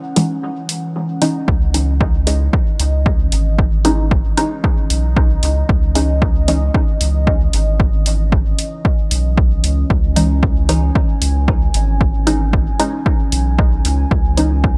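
Meditative and nocturnal, this dub techno excerpt moves at 114 BPM in 4/4 with a straight feel, settled in C# minor around a C#madd9 chord, tuned to A4 = 438 Hz. A deep, moody pad built from sawtooth, sine and triangle layers with a sub octave, ring modulation and wave-folding holds sustained chords under a slow attack and long release, softened by chorus and its own reverb and shaped by sidechain pumping. Over it, a muted, mellow chord stab with a short filter pluck and detuned sawtooth and square tones sits in a narrow middle register, coloured by phaser and dub echo and also pumping. An overdriven electronic hi-hat starts at 0.2 seconds, and after an opening break the punchy, up-front overdriven kick and a soft, round sub bass of triangle and square waves with tube saturation both arrive at 1.5 seconds. The production is dark and warm, with a digital ambience around the parts.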